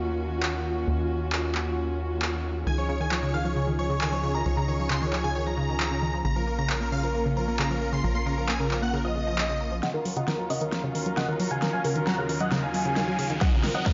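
Uplifting trance at 134 BPM in Eb minor, soaring and emotional. Warm, bowed strings sustain chords and a tight, sawtooth sequencer bass drives underneath until 9.8 s, while a big-room drum kit with a huge snare, metallic overdriven hats and handclaps pumps along. At 2.7 s a huge, euphoric supersaw lead with phaser and delay carries the melody over bright, detuned pluck arpeggios, and from 9.8 s a build-up brings filter sweeps on the lead, pluck and a dark, vintage grand piano in the background, a drum fill, a riser, and finally a punchy, overdriven kick up front, all bathed in a lush hall reverb.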